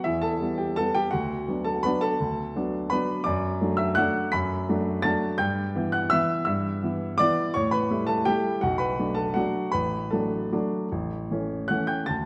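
A solo baby grand piano opens this elegant, sparkling classical waltz fragment up front, its natural, warm tone and short sustain ranging from A1 to B6 in a rubato 3/4 at 147-176 BPM, starting in B minor and turning to D major at 3.3 s as the chords move from Em through A7 and Bm7 to rest on A, heard in moderate concert hall reverb with a dark production.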